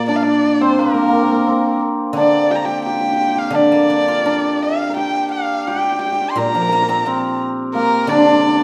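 Loosely rubato in 2/4, this wistful, tender fragment of Chinese traditional chamber music sets an intimate, close erhu melody, bowed by one player with light vibrato, portamento and an airy tone, over a shimmering, ringing hammered dulcimer second line and a silvery guzheng accompaniment played with fingerpicks, all three sounding together for the full 8.6 seconds within the reverberant bloom of a recital hall.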